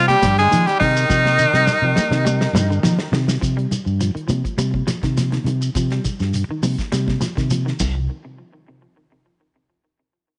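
Afrobeat at 103 BPM in C minor, this short cut from a longer piece feels defiant and driving, sitting on a C minor chord until the harmony drops out at 7.8 seconds. An edgy, forceful tenor saxophone leads up front with vibrato and scooped notes, while a bright trombone touched with tape echo and a very quiet, raspy baritone saxophone trace a second line an octave beneath it, and all three horns fall silent at 3.1 seconds. A clean electric guitar ripples arpeggios in the background through subtle chorus and tape echo, and a round, dark fingered electric bass sits up front, carrying the groove to the end. A damped 70s drum kit with a fat snare and tight kick, high-tuned congas with a thin skin, and a grainy shekere fill out the rhythm, with a drum fill running from 1.1 to 3.4 seconds. The sound carries light reverb and a small room ambience, with a dull, rolled-off top.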